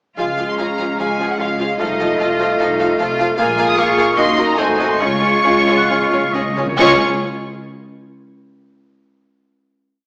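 Heard through a small speaker in the wet reverb of a scoring stage, this short, cheerful and graceful romantic orchestral piece in Db major moves at a fast 132-154 BPM with rubato phrasing, as a lush, distant violin section sings the melody, doubled in unison and at the octave by a pure-toned flute ensemble, while a clear oboe answers at phrase ends, a very quiet clarinet and a roomy bassoon add mellow chords, a second, closer violin section and a symphonic viola section play repeated notes and sustained chords, a dark French horn section holds sustained chords with a soft attack, cellos weave a focused counter-melody over double basses marking the beats, and hard-mallet timpani enter at 5.0 seconds with a roll during a gradual slowing that settles on a final chord at 6.8 seconds.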